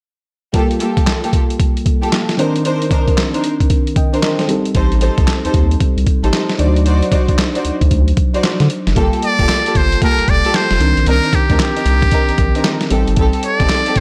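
Glassy FM electric piano with chorus, lush bowed string stabs and a gritty, pitched-down boom bap kit with handclaps and gated reverb open this confident, slick new jack swing cut in G minor at 114 BPM, swung over Gm9, Cm9, Am7b5 and D7b9, before a round, deep analog bass enters at 4.7 seconds and a breathy, buzzy trumpet with metal mute takes an intimate, up-front melody from 9.2 seconds.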